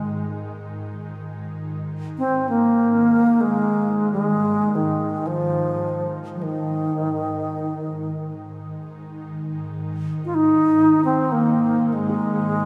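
A huge ambient reverb with a long 5.1-second tail surrounds this spacious, calm passage of world meditation music, cut from a longer piece and flowing in free time. Up front, a bright, reedy bass flute carries the melody with a pure tone, vibrato and tongued notes, its lines trailed by tape echo. Beneath it, an ethereal, airy pad holds a low, sustained drone, its detuned unison voices thickened by ensemble chorus, tremolo and their own built-in reverb, with a slow attack and long release that keep the bed mellow. Near the close, at 12.1 seconds, a very quiet bronze singing bowl struck with a suede striker adds a ringing, metallic shimmer with slow beating.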